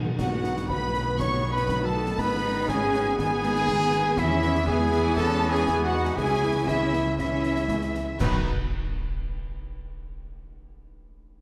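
This cinematic, heroic adventure film score moves at 120 BPM in a straight 4/4 in B mixolydian, triumphant and soaring, and is cut from a longer piece. A very quiet timpani fill opens at 0.0 s alongside ringing, fingerpicked harp arpeggios and an airy, hollow flute line, before the full orchestra lands together with an accent at 0.2 s. Lush bowed violins carry the melody with a second violin line beneath it, while close violas fill the accompaniment, and a rich double bass section anchors the low end, joined by expressive cellos from 1.2 s. Dark, distant French horns and vintage-toned trombones hold sustained chords as a mellow solo trumpet punctuates with stabs, and snare, clash cymbals and bass drum drive the rhythm with tam-tam adding weight at the start. The harmony moves through B, G#m, E and C#m before returning to B at 8.2 s for another accent, with timpani and tam-tam returning there, all bathed in a wet scoring stage reverb.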